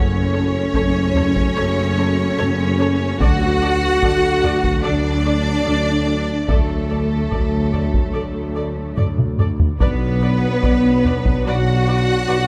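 A moderate concert hall reverb, lasting about 2.4 seconds, surrounds this dark, epic orchestral film cue, heard as a short 12.5-second cut from a longer piece moving at a slow 73 BPM in a straight 4/4. A distant, lush violin section carries the melody with smooth, even vibrato, while a second violin line sits focused in the background beneath it, and a close viola section adds bowed accompaniment. The low end is thick with bowed strings and brass: a cello section with a smooth top, an intense, clear double bass section, and a punchy solo tuba all hold the bass. A very quiet, mellow French horn section and a dark, roomy trombone section in the background sustain chords that move from F#m to D at 3.2 seconds and to Bm at 9.8 seconds. Close, dry taiko drums struck with heavy sticks drive the cue, pushing forward with a fill between 9.0 and 9.8 seconds.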